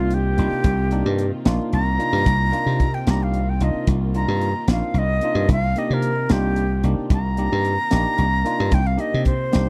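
In a straight-feel 6/8, this slick, funky electric jazz fusion fragment rides on a punchy, foam-muted thumbed slap bass and a tight funk kit with a high-tuned snare entering at 0.1 s, while a breathy, reedy jazz flute solos up front with a crisp chiff over bell-like tine electric piano and a dark, bowed string section held in the background on a Cm11 chord, captured in a dry, close 1970s-style studio sound.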